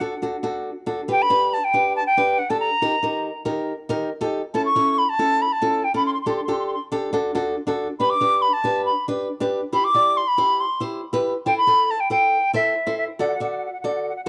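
A straight 4/4 calypso pulse at 139 BPM carries this festive, bouncy fragment in G major, where a pure, metallic concert flute sings the melody up front with expressive vibrato, tongued notes and a slapback echo, over a bright, fingerpicked nylon-string guitar with fresh strings, all in a dry, close 1970s-style studio sound, as the harmony moves from G through Eb, A/C# and Cmaj7 to Am7 before landing on D at 13.2 seconds.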